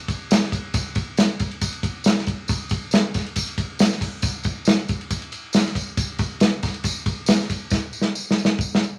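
Soul groove at 138 BPM in a straight 4/4, joyful in mood, with an acoustic drum kit of hi-hat, kick, snare and ride playing from 0.1 seconds, its punchy kick and medium-tuned snare sitting up front in an airy, polished studio room. A jingly, bright tambourine rides along close and dry at a lower level, while moderate studio reverb and a layer of vinyl crackle color the recording. A drum fill arrives at 7.7 seconds and carries this short passage, cut from a longer piece, to its end.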